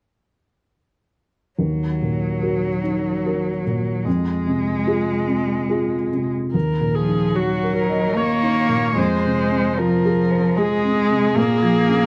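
From 1.6 s, a boxy, thick-felt upright piano and a single bowed cello with rich vibrato open this melancholic, reflective neoclassical excerpt in Eb dorian, moving in a rubato 3/4 at around 74 BPM over Ebm and Fm chords, the intimate, mellow, dark piano accompanying the cello's second line until a focused, single bowed viola joins at 6.5 s, all set in a moderate echo-chamber reverb with small-room ambience as the harmony turns to Bbm at 11.4 s.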